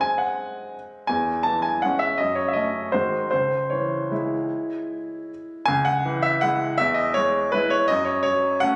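A clear, polished baby grand piano opens this classical piano waltz in C# minor, playing solo from the first moment on a G#7 chord. The mood is wistful and bittersweet, with the 3/4 pulse moving freely in rubato between roughly 146 and 176 BPM. The piano sits present and up front, ranging from C#2 to A5 as the harmony passes through C#m/E, D#m7b5/F# and back to G#7 before settling on C# minor. At 5.7 seconds a new section begins, turning toward E major and then F# minor before the clip, cut from a longer piece, ends at 8.8 seconds. The sound carries a moderate recital hall reverb alongside the ambience of a club, captured on a phone in the room with compression.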